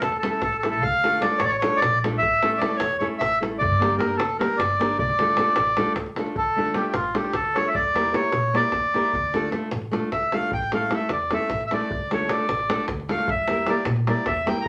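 A short reverb gives this studio recording a lively, slightly wet room sound, with the reedy, mid-forward accordion placed up front and the other players sitting behind it. It is a fiery yet bittersweet piece of Balkan wedding-band folk in D harmonic minor, driving along in 7/8 at 303 BPM counted in eighths with a straight feel. The accordion carries the melody across its upper-middle range. The fingerpicked nylon-string guitar adds classical-style accompaniment with a gentle glow, while the woody pizzicato upright bass anchors the low end. The deep, close-sounding davul keeps the beat throughout. At 6.4 seconds the music moves into a new section where the accordion takes a solo, as the harmony shifts through E diminished, D minor and A chords, and the clip breaks off as part of a longer piece.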